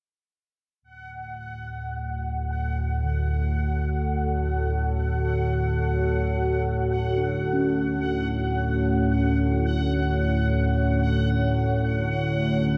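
A huge, cavernous reverb with a long tail surrounds this dark ambient drone in D major, cut from a longer piece and moving in free time with a dark mood. A bubbling, resonant sawtooth texture with random filter steps enters first at 0.8 seconds, followed at 1.2 seconds by an up-front, nasal analog drone in the low register that evolves under chorus. At 2.9 seconds, a deep, moody pad of detuned sawtooths with a sub octave sustains chords, and from 3.0 seconds a soft, metallic bronze singing bowl, played with a felt mallet, rings out airy arpeggios through a delay in the background.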